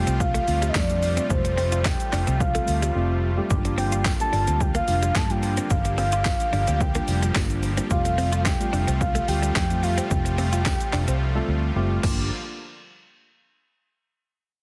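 A punchy, up-front house drum kit with a cracking snare, handclaps, shaker and crash drives this energetic dance-pop excerpt at 109 BPM. It drops out briefly at 3.0 s and again from 11.2 s, while a dark, round, foam-muted fingered electric bass pumps beneath it. A full, octave-layered synth lead carries the melody with chorus, tremolo and tape echo over a mellow tine electric piano, smooth detuned supersaw chords, a clean picked guitar riff recorded direct in the background and a jingly, dry tambourine, all moving between Fadd9 and Gm7 in a heavily compressed, radio-like mix with light reverb.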